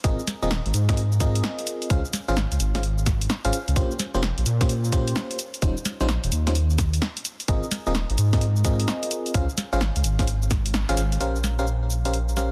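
A dark, detuned sawtooth bass sits up front in this late-night, soulful two-step garage excerpt, its deep unison voices beating and rumbling beneath the groove. Set at 129 BPM in 4/4 with a 64% swing on the sixteenths, the track moves through Bb dorian on lush chords such as Ab69, Dbmaj7, Bbm69 and Eb13. An FM electric piano plays glassy, bell-like stabs with a warbling vintage character, treated with chorus and delay. A tight, layered electronic kick carries a tape-warm weight and the roomy sound of a large space, dropping out at 10.6 seconds just before a band accent at 10.7 seconds. A punchy analog drum machine supplies hi-hat, shaker and a punchy snare throughout. Light reverb and a dense, heavily limited modern master keep the mix full and loud, and the fragment turns to a new section at 11.2 seconds before it is cut off.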